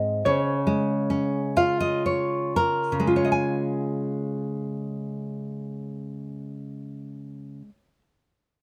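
This children's lullaby, cut from a longer piece, moves in 3/4 at an unhurried 54-76 BPM in Db major, tuned to A4 = 443 Hz, with an innocent, sleepy mood. A fingerpicked concert harp carries the melody in a small, ringing range from Db5 to Eb5, stepping aside at 2.2 s. A full-bodied nylon-string guitar, fingerpicked in a deep classical style, supplies the accompaniment from Ab2 up to Ab5 and sits up front until 8.0 s. The opening gradually slows, and a guitar fill runs from 1.1 to 3.1 s before the piece moves into a new section. Close, detailed microphones catch the guitar's audible finger squeak and warm body within a light reverb.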